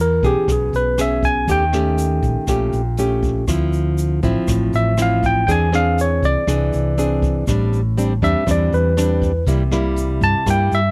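A straight 4/4 pulse at 120 BPM carries this relaxed, breezy bossa nova, cut from a longer piece and running about 10.9 seconds. A barky, bright tine electric piano takes the solo melody up front from the first moment, its clean tone coming through a combo amp. Beside it, a warm nylon-string guitar fingerpicks the accompaniment in a classical manner, while a round, dark hollow-body short-scale electric bass holds down the low end. Entering at 0.2 seconds, a brushed jazz kit with a boomy kick, hi-hat and rim click sits in the background alongside a grainy tube shaker. The harmony moves through rich jazz chords such as Eb7#11, Dm9 and Am11 before landing on C7, all captured in a dry, close 1970s-style studio sound with small room ambience.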